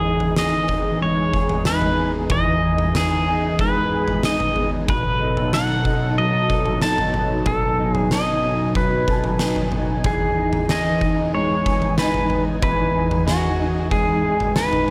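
Blissful and ethereal, this dream pop passage at 93 BPM in E major sets an up-front, clean pedal steel guitar singing the melody with slapback echo over a swirling, detuned analog pad on phaser and chorus, a dark, slightly broken-up electric guitar fingering arpeggios through ensemble chorus, and an oversized low-tuned drum kit with a boomy kick and fat snare that joins at 0.2 seconds, all moving from Emaj7 to B7 and back in a moderate booth ambience.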